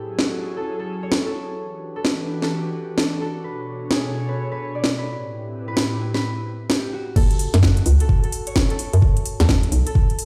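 A hollow, knocking FM bass arrives at the drop at 7.2 s alongside a layered electronic kick, pushing this skippy, late-night two-step UK garage cut at 129 BPM in F# phrygian with a swung 16th feel. From the start, a ringing, fingerpicked concert harp carries the melody through a tape echo, at first over an airy, breathy pad that pumps with the sidechain through minor ninth chords from F#m9 to Am9. An overdriven house kit with a cracking snare, metallic hats and crashes sits up front, and the whole mix plays back through a big sound system in a bare stone room.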